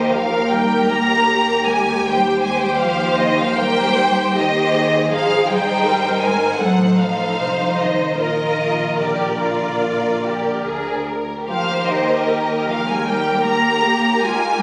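Tender and serene, this slow romantic classical movement for string orchestra unfolds in Eb major at 71-81 BPM with a rubato feel: a lush, up-front violin section sings the melody over a second violin line with soft attack, a dark, woody and distant viola section, a smooth cello section and a rich double bass section, all bowed with vibrato and set in moderate concert-hall reverb captured on a phone in the room.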